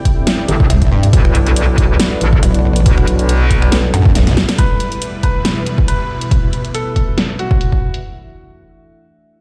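Huge, detuned supersaw chords and a deep, moody ambient pad in the background open this chaotic, menacing heavy wobble dubstep cut in E minor at 139 BPM half-time, where a punchy, up-front electronic kick and a dubstep kit with finger snaps, hi-hat and a huge snare drive a drop in which two aggressive, saturated metallic wobble basses with chorus and overdrive snarl from 0.5 and 0.7 seconds, before a drum fill and band accent hand over at 4.6 seconds to a clear, polished baby grand piano melody with digital delay while a filter sweeps across the drums.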